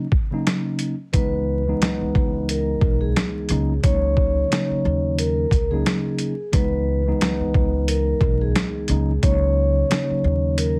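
This boom-bap hip-hop excerpt has a dark, moody feel, with a gentle swing on the sixteenths in 4/4. A mellow tine electric piano opens the track, its clean, up-front chords coloured by cassette tape. Sampler-style drums arrive almost at once: gritty and pitched down, with a thumpy kick and a medium-tuned snare under the hi-hat. At 1.1 seconds a woody pizzicato upright bass enters low, along with a metallic, ringing vibraphone played with soft mallets. The vibraphone carries a short melody through a slapback echo. The harmony sways between C#m7 and D#m7/C#, and the whole mix has moderate studio reverb, a heavily compressed radio-like sound and a bed of vinyl crackle.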